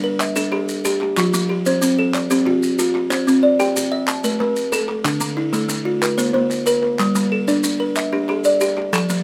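Southern African traditional music in a mbira-style interlocking cycle, this short excerpt from a longer piece has a hypnotic, warm mood in a straight 12/8. Two buzzing kalimbas play arpeggios together from the start: one is a bright, airy solid-board instrument with a woody thumbnail pluck, while the other, set in a hollow box, rings with a vintage, band-limited character. A group handclap with a human, close and dry sound joins at 0.2 s alongside grainy, mellow maracas that sit distant in a large room. The harmony moves through G minor, F and C, pauses on an unharmonised stretch, then passes through D minor and B-flat sus2 before returning to G minor as a new section begins at 7.0 s. Light reverb and close, detailed microphones keep the kalimbas up front and intimate.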